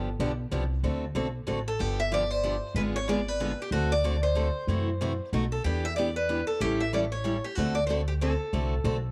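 A bright, picked steel-string guitar melody with audible finger squeak enters at 1.7 seconds over a boxy parlour guitar accompaniment and a woody, thumpy pizzicato upright bass on gut strings, giving this brief, playful and charming jazz manouche piece in 3/4 a lightly reverberant studio sound and a swung lilt through its turns from G7 to a diminished chord, a minor ii–V and home to D7.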